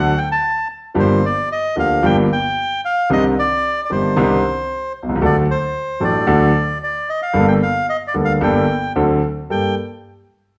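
A reedy, dark bandoneon melody and a vintage concert grand piano with deep bass open together in this dramatic, sultry tango excerpt in G minor at 113 BPM with a rubato feel, tuned to A4 = 444 Hz, both up front in a wet studio reverb heard from further back in the room as the harmony moves from D through Gm7 and Cmadd9 to a D7 at 9.0 s before settling on Gmadd9.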